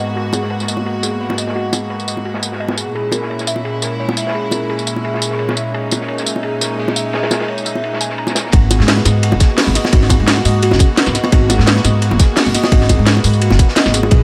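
A 172 BPM groove in 4/4, with a light swing on the sixteenths, drives this dreamy, lush liquid drum and bass passage in G# minor, cut from a longer piece. Two kits layer in just after the opening: an up-front electronic drum and bass kit with a cracking snare, metallic hats and tambourine, and a gritty, saturated breakbeat kit with dark, filtered cymbals and a rolled-off top, while soft-handed, low-tuned bongos add round acoustic percussion. Over this, a bowed symphonic string section holds floating sul tasto chords with a pumping sidechain feel. A harp-like synth pluck rings out chorused, phased and delayed arpeggios above them, under a filter sweep. At 8.5 seconds the drop arrives, bringing in a tight electronic kick and a woody, thumpy pizzicato upright bass on gut strings, both sitting prominently in the mix. The harmony moves from G#m7 to A#m7b5 and returns to G#m7 at the drop, all bathed in light reverb.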